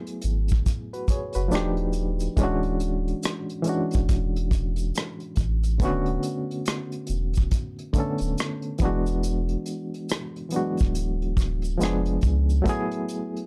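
Hazy and nostalgic, this swung lo-fi hip hop clip at 70 BPM pairs a barky, reedy electric piano with fast tremolo, light overdrive and cassette-tape colour moving through rich chords from F#m11 to Fdim7, a vintage brush drum kit with a tight kick, hi-hat and rim click, a round, deep sine sub bass that stops at 12.6 seconds ahead of a short break, and a grainy tube shaker in the background, all in a dry, gritty recording with transformer saturation.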